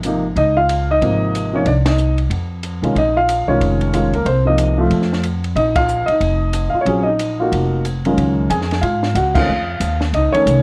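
A cool, swinging jazz piano trio in Bb minor opens with upright piano, upright bass and a compact cocktail drum kit together, moving at a brisk 184 BPM in 4/4 with a loose swing on the eighth notes. The piano carries the melody up front, its tone warm, woody and long-sustaining, while the pizzicato bass sits up front alongside it with a thumpy, steel-strung body and a woody attack. Further back, the dry kit offers dark cymbals, a high-tuned snare and a punchy kick under crash, ride and hi-hat. The harmony drifts through lush colours such as Dbmaj9, a rootless Db7 and minor add11 chords, and the trio hits shared accents at 1.8, 5.7 and 9.3 seconds. Around 8.2 seconds the music opens onto a Gbsus2 before tightening on an F7b13 as this fragment of a longer piece breaks off. Light reverb and the worn, warbling pitch drift of old cassette tape give the whole recording a hazy, nostalgic cast.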